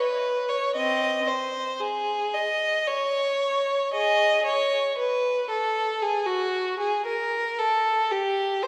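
A single violin carries this short classical passage alone, its bowed line smooth and even, with vibrato, a warm tone and a smooth top. The writing suggests a baroque-style suite movement for unaccompanied violin, in 3/4 at a slow 57 BPM with a free, rubato feel. The violin sits up front in the sound, ranging from B#3 up to D#5 across the 8.7 seconds of this fragment cut from a longer piece. A concert hall's generous reverb, with a 2.5-second decay, surrounds the instrument, and the listening position feels set further back in the room. The mood is serene and radiant throughout.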